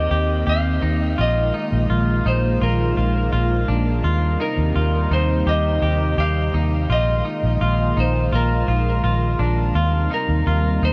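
A huge ambient reverb with a long 7.3-second tail surrounds this dark, warm-toned production, giving the short dream pop excerpt a floating, dreamy haze. At 84 BPM in a straight 4/4 feel in Eb major, the harmony moves between Eb6 and Bb7sus4 across the full 10.9 seconds. A clean lap steel guitar, played with fingerpicks and slide, carries the melody, dressed in shimmer reverb and delay. Beneath it, a thick, airy pad of detuned sawtooth unison voices with a noise layer and slow attack holds sustained chords through chorus, phaser and shimmer reverb, while a bright, twangy picked electric guitar spins arpeggios soaked in lush chorus, shimmer and delay. Sitting up front, a vintage foam-muted fingered electric bass supplies a round, amped low end that anchors the drifting textures above.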